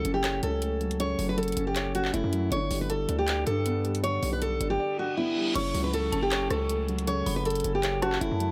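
Brooding and menacing, this short cut from a longer half-time trap and hip hop piece at 158 BPM in F# phrygian moves between F#m and G chords. An up-front, full-bodied picked steel-string acoustic guitar carries the melody with audible finger squeak over soft, mellow felt-muted upright piano, both low-pass filtered, while a punchy, heavy 808-style bass and an electronic trap kit of bright hi-hats, handclaps, rim clicks and crash cymbal, re-recorded in a small room, drive underneath. A background reverse cymbal and downlifter arrive at 5.0 s ahead of an eerie, inharmonic detuned synth bell, treated with chorus, phaser and digital delay, from 5.6 s.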